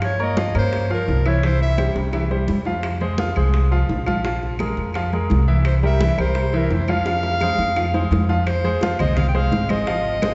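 Danceable and warm, this excerpt of Cuban son and guajira in F minor moves at 171 BPM, with an intimate baby grand piano playing arpeggios up front, its action noise audible and its notes sustaining long, beside a dark, thumpy pizzicato upright bass on gut strings, while a classical-style clear clarinet sings the melody from 0.0 s and returns at 5.7 s, and in the background sit ringing congas, tight high-tuned bongos and woody claves, with drum fills at 2.0 s and 7.1 s, all bathed in a wet church reverb with a soft, rounded top end.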